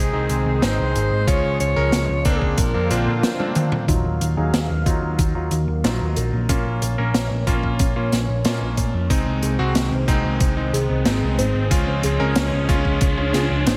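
Nostalgic and nocturnal, this synthwave excerpt opens with a breathy, close-miked alto saxophone melody with vibrato and digital delay over a lush, chorused unison pad with sidechain pumping, filtered stabs from a clear electric grand piano, and a dark, up-front hollow-body picked bass, soon joined by a swinging big-band drum kit with a polished snare and, at 1.3 seconds, a thumpy, tape-tinged electronic kick. Then, after a drum fill, a very quiet, soft round pluck enters at 3.9 seconds with arpeggios while the pad and piano sweep through their filters, and a background riser builds from 8.3 seconds until the saxophone returns briefly at 13.7 seconds.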